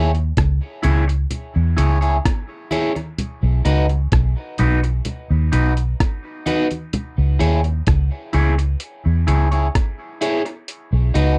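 A dry, close recording in a 1970s studio style carries this spacious, heavy dub reggae fragment, cut from a longer piece. A dark, round, foam-muted fingered bass sits up front alongside a compressed, pitched-down sampler-style drum kit with a thumpy kick, muffled hi-hat and rim click. A twangy, slightly broken-up picked guitar plays accompaniment through phaser and dub echo, while low-tuned congas struck with hard hands add bright, echoing accents from 0.8 to 7.2 seconds.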